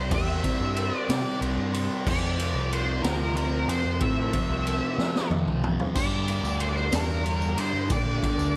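This excerpt of hypnotic, dark psychedelic rock at 62 BPM in a straight 6/8, tuned to A4 = 435 Hz, opens with a bright, double-tracked fuzz guitar riff through a phaser, a shadowy octave-fuzz lead melody with slapback echo, and a round, amped picked bass moving from C to F5 to Gm, as a gritty, up-front garage drum kit with a boomy kick and high-tuned snare drives the groove in a small room, plays a fill at 5.0 seconds, and is joined at 6.0 seconds by a jingly vintage tambourine set in the background.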